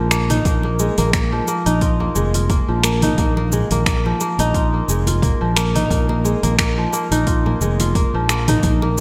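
A ringing, crisp kora sits up front from the start, its arpeggios trailed by delay and shimmer reverb over a fretless electric bass with tube saturation and sidechain pumping, as a deep house kit of cabasa, finger snaps, metallic hi-hat and toms with overdrive and gated reverb, an overdriven deep electronic kick from 0.5 s and very quiet, compressed congas build a hypnotic, earthy organic downtempo groove at 88 BPM with 55% swing on the sixteenths, set in a lush hall with a bright 1980s-style digital sheen over a single Absus2 chord in this short excerpt.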